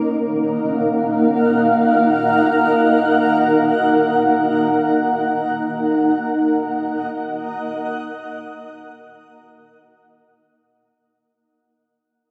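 Floating in free time, this short ambient piece drifts with a reflective, serene mood. A single granular cloud pad carries everything, holding sustained chords that sit up front and span from Bb3 to Gb5 over an Ebm7/Bb harmony. Its sound is blurred and detuned, with a mellow sine core, slow attack and long release that let each chord hang and shift like a slowly evolving cloud. A filter sweep shapes the pad across its full 11.2 seconds, while its own built-in reverb is wrapped in a huge, wet ambient space with an 8.6-second decay. A fade-out begins at 2.8 seconds and carries on to the end of this fragment, cut from a longer piece.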